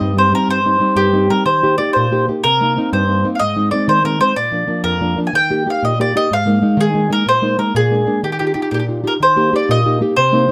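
Romantic and wistful, this Italian folk excerpt moves in a rubato 6/8 at around 125 BPM in dotted quarters, settling in Eb major after opening on Cm. A round, picked mandolin with doubled strings carries the melody up front, while a dark, boxy fingerpicked nylon-string guitar accompanies it throughout the 10.5 seconds, passing through Ab, Bb7 and Ebadd9 before landing on Eb at 9.2 seconds. Moderate studio reverb gives the intimate duo a gentle sense of space.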